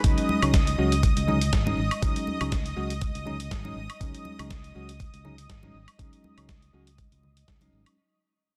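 Sensual and cosmic, this short nu-disco excerpt with a light swing sets a bell-like tine electric piano, pumping and echoing over a rootless B6 chord, against a lush, detuned sawtooth pad shimmering with chorus, a fingered electric bass, a dusty soul sampler-style kit of hi-hat, gritty snare and woodblock, a thumpy kick up front and hard-hand congas in the background, all under light digital reverb, a dense, heavily limited master and a fade-out across its 8 seconds.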